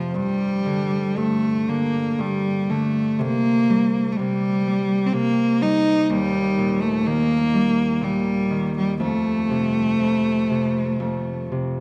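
A single bowed cello carries the melody in this mournful Celtic slow air, its rich, smooth tone shaded with vibrato and placed close and up front from the opening moment to 11.5 seconds. Beneath it, a fingerpicked Celtic harp supplies the accompaniment in a lower register, its ringing acoustic strings sitting up front as well and sounding until 11.8 seconds. The music moves in three with uneven beats and a loose, rubato feel that lets each phrase breathe with a sense of longing. The harmony drifts from G through C and E-flat before settling on F. A deep cathedral reverb with a long tail surrounds the pair, and the dark, warm production lends the short passage, cut from a longer piece, a mournful weight.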